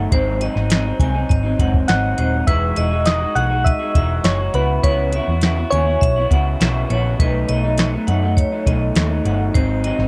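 A soft vintage rhythm box with a deep kick, crisp snare and metallic hats keeps a straight 102 BPM pulse in 4/4 for this sunny, dreamy indie and bedroom pop excerpt in E major, playing together with a dark, foam-muted picked electric bass up front, a twangy, slightly broken-up electric guitar through a small old amp wrapped in lush chorus and warbly pitch drift, a ringing hard-mallet vibraphone line with tape echo and subtle chorus, and soft, round electric-piano-like synth keys carrying the melody from 1.9 to 6.3 seconds over chords moving from G#7 through Emaj9, C#m11 and B7, captured in a dry, close 1970s-style studio sound.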